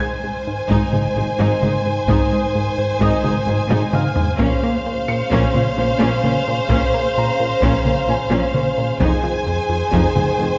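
A cinematic hybrid of orchestra and electronics in a relentless, futuristic 5/4, where lush bowed violins carry a vibrato melody over mellow, tight French horn chords and a punchy, ring-modulated analog bass riff, while woody violas, cellos and double basses join with hard-stick taiko drums at 0.7 seconds, a drum fill arrives at 3.7 seconds, and a felt-muted upright piano with delay glints softly in the background of a wet concert-hall space.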